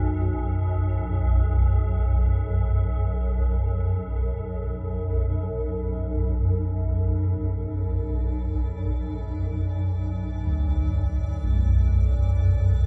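Cathedral reverb soaks this dark, cavernous excerpt of ambient drone, which moves in free time in B minor, tuned to A4 = 435 Hz, with an unsettling mood. A swarming, detuned drone sits up front throughout, tense and granular in its low register. Gamelan-type bossed gongs ring out metallic, bronze arpeggios with delay until 4.6 seconds and return at 10.5 seconds. The harmony settles from B5 to B minor at 7.5 seconds, and from 8.2 seconds a faint, icy glass pad with chorus adds an airy, crystalline shimmer on a high D.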